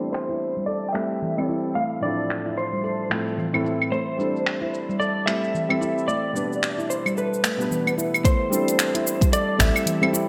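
A lush hall reverb and a bright, 1980s-style digital sheen wrap this short cut from a longer organic downtempo piece, which sits in A minor at 111 BPM with a swung sixteenth-note feel and a mystical, earthy mood. An up-front electric slide guitar carries the melody with a dark, slightly broken-up, compressed tone, while a soft, intimate felt-muted upright piano plays accompaniment with sidechain pumping and delay. A ringing, meditative handpan spins arpeggios with sharp finger strokes and a close, full sound, under a low-pass filter and delay. An afro-pop drum kit of claves, finger snaps, dark hi-hat and shaker stays up front, and filter sweeps move across the drums and handpan until 8.2 seconds. At that point, as the harmony returns to Am7 after passing through Fmaj7/A, C6 and G/B, a deep, layered electronic kick arrives, and a round, sine-like sub bass with tube saturation and sidechain pumping touches a low A at 9.6 seconds.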